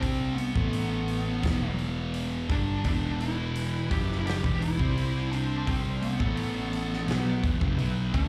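Stoner and doom metal with a heavy, brooding mood, heard as a live club performance through the venue's PA and cut from a longer piece. A dark, fuzz-drenched lead guitar carries the melody through tape echo over two thick fuzz rhythm guitars grinding out the riff in the background, one with slapback echo, while an overdriven, foam-muted bass rounds out the low end and a big acoustic kit drives with a punchy kick and medium-tuned snare. From 2.8 seconds a gritty, overdriven tonewheel organ slips in behind with sustained chords through a slow rotary speaker and chorus vibrato, as the harmony circles C5, A5 and Em.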